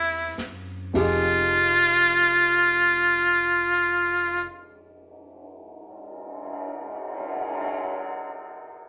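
Heard in a moderate studio reverb, this wistful, smoky jazz ballad fragment puts a buzzy, metal-muted trumpet up front with light vibrato and scooped notes until 4.5 seconds, over a natural-sounding baby grand piano that carries on to 8.9 seconds, a woody, growly pizzicato upright bass, and a brushed drum kit with dark cymbals and a boomy kick that enters at 0.4 seconds.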